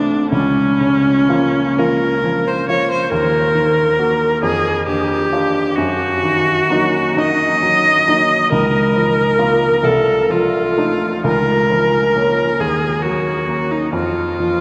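Solemn and elegiac, this romantic classical duo in Bb minor moves slowly in 6/8 at 44 BPM (dotted quarters), with uneven, rubato beats. A single bowed viola carries the melody up front with a rich, focused tone, vibrato and a smooth top, while a warm, present baby grand piano accompanies through chords such as Bbm/Db, Ebm, Fm69 and F7/C. A wet cathedral reverb with a 4.9-second decay surrounds the pair in this 14.6-second passage cut from a longer piece.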